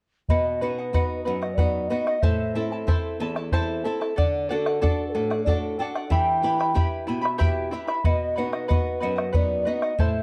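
Festive and earthy, this short Andean folk excerpt moves in a slow 6/8 at 62 BPM, with a hollow, clay-toned alto ocarina carrying the melody with vibrato and a crisp chiff over shimmering double-strung charango and bright fingerpicked flamenco guitar with finger squeak, while a round, close, dry bombo sits up front, all in a moderate studio reverb with a dark, warm production as the chords move from B through Am, D and Em back to B.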